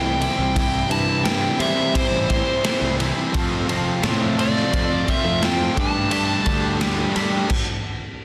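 A dense, heavily limited modern master with light reverb gives this brooding, dark alternative rock excerpt a packed, forceful sound at 86 BPM in a straight 4/4. A dark, overdriven lead guitar carries the melody, while a clean, twangy twelve-string electric guitar plays arpeggios in the background, coloured by harmonic tremolo and digital delay. A bright electric guitar riff and a round fuzz bass anchor the low end beneath a raw garage drum kit with a punchy kick, a medium-tuned snare, crash and ride cymbals, and a gritty, saturated tone with a rolled-off top, set in a stone room. At 3.3 seconds a compressed, distorted electric guitar adds a second riff in the background as the harmony moves from C to F, then on to Gsus2. The other guitars stop at 7.5 seconds and the drums fall away by 7.7 seconds, while the lead guitar carries on until 8.2 seconds.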